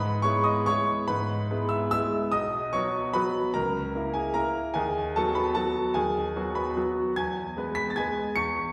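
A lilting 3/4 waltz at 148 BPM moves with uneven beats and free rubato, giving this sparkling, playful classical fragment in E major a breathing, spontaneous pulse. A solo grand piano carries it alone for its full 8.7 seconds, ranging from B1 to C#7 with a clear, intimate, up-front tone where the action noise is audible and the notes ring with long sustain. The harmony moves from E/G# through B, A#dim/C# and B/D# before landing on E at 7.2 seconds, all set in the lush reverb of a recital hall or church.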